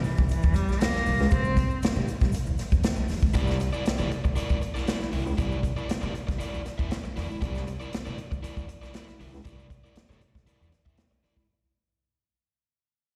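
A straight 4/4 funk groove opens on a break, driven by a swinging big-band drum kit placed up front, with a punchy kick and medium-tuned snare that sound airy and polished, while a woody, thumpy pizzicato upright bass on gut strings and a very quiet, grainy tube shaker carry the playful mood. A clear, bowed cello with vibrato and slapback echo sings a brief melody that ends at 1.8 s, and at 3.3 s a crunchy, overdriven, picked electric guitar enters over a C9 chord, carrying its own slapback echo as the music fades out. The track sounds like a live gig heard through the venue's PA, cut from a longer piece.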